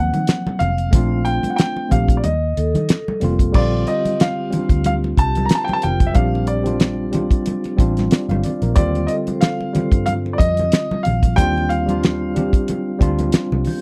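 A dry, up-front 70s drum kit with a fat snare and tight kick anchors this lush, smooth 1970s-style soul excerpt, with a gentle swing to the sixteenths. A natural-toned concert grand carries the melody over a worn, slightly out-of-tune, lightly overdriven tine electric piano and a dark, round, foam-muted fingered bass. Damped, thick-skinned congas sit in the background, and a metallic, ringing vibraphone with slow motor vibrato joins softly at 2.6 seconds in a close, lightly reverberant studio sound.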